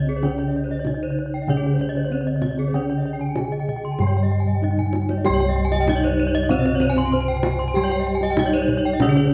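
Balinese gamelan at 96 BPM with a shimmering, hypnotic mood, cut from a longer piece, where ringing bronze metallophones struck with wooden mallets carry the melody and a low accompaniment, two brighter horn-mallet metallophones spin high arpeggios with paired-tuning beats, up-front round bossed gongs hold the bass, and a tight, soft-handed kendang sits in the background with a drum fill at 4.5 seconds, all in a moderate recital-hall reverb with a dark, warm production.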